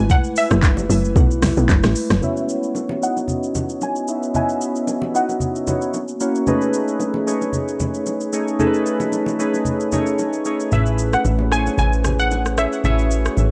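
Hypnotic and late-night in mood, this amapiano excerpt moves at 113 BPM in 4/4 with a swung sixteenth feel, set in C# minor. A tight, punchy log drum bass with an FM bite and a noise layer sits up front through the opening drop, then stops at 2.2 seconds, when chorused analog keys enter, round and detuned with a ring-modulated edge and a filter sweep. A glass harmonica holds ethereal sustained chords from the start, pumping with sidechain behind a low-pass filter. A crystalline wavetable pluck carries the melody through chorus and digital delay, pausing and returning at 10.7 seconds alongside a funky, wave-folded analog bass on A1. The electronic drum kit brings a soft kick, fat snare, handclaps, rim clicks, shaker and smooth hats with tape-warm 12-bit sampler grit, joined by softly played congas and bongos in a small room, all under light reverb, as the harmony drifts from F#m11 and C#m11 through F#7 and B13 to Amaj9.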